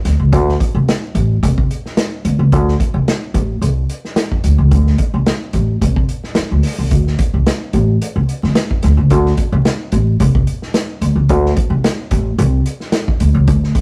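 A woody, dark upright bass, plucked pizzicato on steel strings and sitting up front, carries this short, playful funk cut from a longer piece at 109 BPM in a straight 4/4. A vintage acoustic drum kit plays alongside it throughout, with a boomy kick, medium-tuned snare and hi-hat in a small, pumping room, its top end rolled off. The rough rehearsal-room recording adds warm saturation, vinyl crackle and light reverb across its roughly 13.8 seconds.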